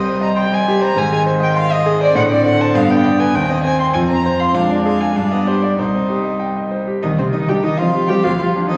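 The rich violin leads this quick, classical-period movement for piano quartet, singing a floating, pure melody between C5 and C6 with a soft attack and the hushed colour of sul tasto bowing. Set in C minor at 100 BPM in a straight 2/4, the excerpt feels dramatic and restless, its harmony moving from Cm through Ab, G and a diminished chord before returning to Cm around 5.8 seconds. Beneath the violin, an intimate cello carries a second line from C3 to Ab3 with light vibrato and an airy bow, while a dark, smooth-topped viola fills in the inner accompaniment. A brilliant grand piano sits up front, spanning C2 to C6 with a bright, natural tone. All four parts play throughout the 8.8-second excerpt, heard from further back in a recital hall whose wet reverb lingers for about 1.7 seconds, and the passage is cut from a longer piece, closing on a G5/D chord at 8.2 seconds.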